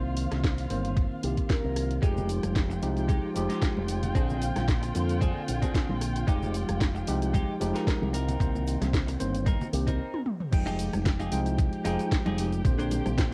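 A worn, slightly out-of-tune tine electric piano with analog delay, a dark, bowed violin section holding vibrato-laden chords, and a round, up-front fingered bass through an envelope filter open this groovy, sleek nu-disco excerpt in F dorian at 113 BPM together, all three pumping against the thumpy, tape-warm electronic kick that enters at 0.4 seconds. A house kit with a cracking snare and overdriven, bright hats drives the swung groove, while a hollow, airy flute note drifts in the background around 1.5 seconds before a twangy, compressed clean guitar riff with lush chorus and very quiet cabasa and congas arrive at 2.0 seconds. After a short break and drum fill, the drop lands at 10.5 seconds over Fm9, the whole mix carrying a light reverb and the hazy character of a home cassette recording.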